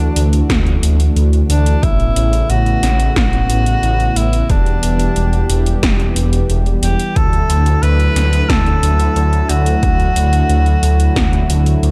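A detuned saw bass, thick and saturated with chorus and sidechain pumping, anchors this nocturnal, driving synthwave excerpt at 90 BPM, beneath a clear, distant tenor saxophone melody with light vibrato and delay, a smooth analog pad sustaining Dadd9, Aadd9 and Em chords, gated snare and metallic hats, and a punchy electronic kick entering at 0.5 seconds, all in a dark, dry production.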